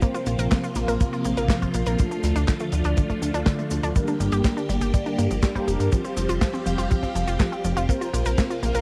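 Danceable and playful, this 122 BPM italo disco excerpt in straight 4/4 sets swirling, phased string-machine chords and brassy, chorused synth-brass stabs over lush, detuned unison-pluck arpeggios with 12-bit grit and tape echo, while a tight, dark kick sits up front beside a smooth soul kit of snare, hi-hat, cabasa and handclaps, and a glossy, ring-modulated synth bass enters at 0.3 seconds, the harmony moving through Bbsus2, Dm, Gm and Fsus2 in a dry, close 1970s-style small room.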